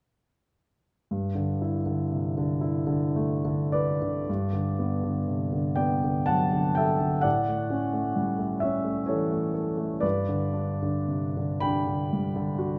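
A concert grand piano enters alone at 1.1 s, opening this brief excerpt of impressionist classical solo piano with a hazy, luminous mood. The pace is slow and rubato in 6/8, letting the phrases breathe freely. The harmony opens on a G6/9 chord and moves at 4.3 s into a Gmaj9, then passes through an A chord before settling back onto plain G. The piano sounds polished and up front, with a deep bass reaching down to G2 and a clear upper range climbing to B5. A moderate scoring-stage reverb surrounds the instrument with a gentle halo of space until the playing stops at 12.8 s.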